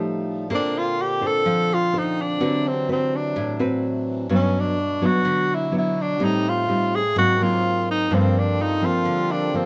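Bossa nova excerpt in G minor at 126 BPM with a wistful, smooth mood: a thumb-plucked nylon-string guitar plays warm, classical-style accompaniment up front, and a reedy, breathing hand-pumped harmonium holds full, dry, close-miked sustained chords in the background; from 0.5 s a breathy tenor saxophone takes the solo melody in a mellow jazz style, with subtone, light vibrato, soft attacks and scooped notes, set in light reverb over rich harmony that moves from F9 through Bbmaj9, D13 and Am7b5 to a closing Gm11.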